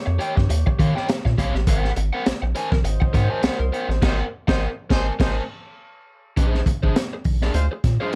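The sound is dry and close, with little reverb, and this short cut from a longer funk piece moves at 102 BPM in 4/4 with a light swing on the sixteenths and a playful, strutting mood. A crunchy breakbeat drum kit sits up front, gritty and saturated, with a high-tuned snare, a tight kick, and dark, rolled-off cymbals over hi-hat and crash. Beside it, a round analog bass with a deep, nasal, fast-attack tone holds the low end at the same prominent level. A raw garage guitar adds overdriven, picked accompaniment, while a mellow horn section plays a tight, distant second line touched with slapback echo. The harmony moves from Eb9 to Ab9, the band hits a shared accent from 4.0 to 6.4 seconds, and a new section opening on Bb9 begins at 6.4 seconds.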